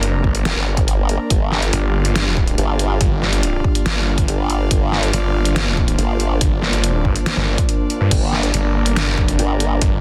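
A half-time 4/4 groove at 141 BPM drives this menacing, chaotic slice of heavy wobble dubstep in G minor, cut from a longer piece and resting on a single G minor chord, with a punchy electronic kick arriving at 0.2 seconds beneath an up-front dubstep kit of deep snare, hi-hat and crash cymbal, both carrying the air of a large room. Two basses dominate: a snarling, growling saw bass with distortion, overdrive and a moving notch, and a formant-sweep wobble bass entering at 0.5 seconds, detuned and chorused with overdrive. Behind them, a thick, warbling vintage unison pad sits in the background while an airy, breathy pad with a noise layer adds bright shimmer, both pumping with sidechain under light reverb in a dense, heavily limited modern master.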